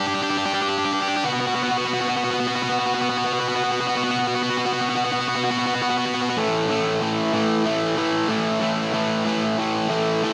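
Hopeful and soaring, this brief rock fragment at 94 BPM in a straight 4/4 features a lone cranked stack guitar, bright and overdriven, picked and double-tracked, sitting up front in a light reverb. Power chords on G5 and B5 build through the first 6.4 seconds before the part lands on A5 as the closing section begins, running to 10.3 seconds.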